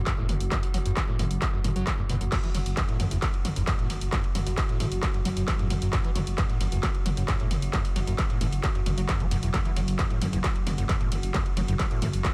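A straight 4/4 pulse at 133 BPM drives this intense peak-time techno cut in F# minor, built on a distorted electronic kick re-recorded in a large room and an up-front kit of handclaps, warm hi-hats, ride and crash cymbals and toms, whose hats, toms and cymbals pump against the sidechain and trail dub echoes. Underneath, a dark, rumbling detuned sawtooth bass beats and pumps, while a squelchy, gritty acid bass riff with a resonant filter sweep, subtle chorus and dub echo sits in the background. An eerie, metallic FM drone warbles through chorus, phaser and its own reverb behind them all, in a dry, echo-heavy mix taken from a longer piece.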